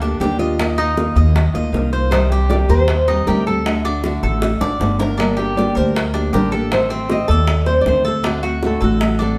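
From the first beat, a full Cuban son and guajira ensemble plays together in G minor at 157 BPM, its sultry, nostalgic mood carried by a stone room's wet reverb that gives the live band a shared, resonant space. Two fingerpicked nylon-string guitars lead the sound: one carries the melody with fresh, classical clarity, while the other plays a full-bodied, deep accompaniment in which a little finger squeak can be heard. A Cuban tres weaves arpeggios through the middle with picked double strings, some octave-doubled, giving a metallic shimmer. Underneath, a pizzicato upright bass with gut strings sits up front, dark, woody and thumpy, and low-tuned bongos struck with hard hands add a round, compressed, saturated pulse that breaks into a drum fill from 4.4 to 5.2 seconds. The harmony moves from Gm through Ebsus2, Cm and D, then back to Gm before Adim and a closing D7, in this short cut from a longer piece.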